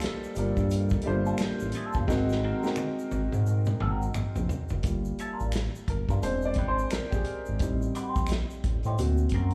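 Introspective and late-night, this neo-soul R&B excerpt in G minor moves at 87 BPM with a swung sixteenth feel: a woody upright piano with slapback echo and a tight-kicked soul drum kit with a rolled-off top sit up front alongside a mellow sawtooth synth bass, while finger snaps and a tube shaker echo in the background and a twangy, clean electric guitar with wah enters at 1.3 seconds, a drum fill runs from 2.1 seconds, and the piano takes a solo from 4.8 seconds over Gm7 and Eaug7 chords, all heard as a live gig through the venue's PA with club reverb.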